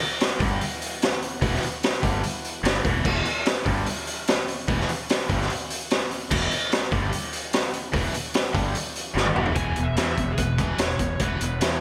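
A straight 4/4 hard rock drive, anthemic and energetic, with a raw garage drum kit up front (boomy kick, high-tuned snare) and a punchy fuzz fingered bass pushing two bright picked riff guitars, one tight and distorted and the other a cranked stack with phaser, while a very quiet overdriven tonewheel organ holds thick chords with key click and slow rotary until 9.5 s, and after a drum fill a dark, lo-fi lead guitar through a small cranked amp takes the melody at 9.6 s, set in a lush hall reverb with 1980s-style digital production.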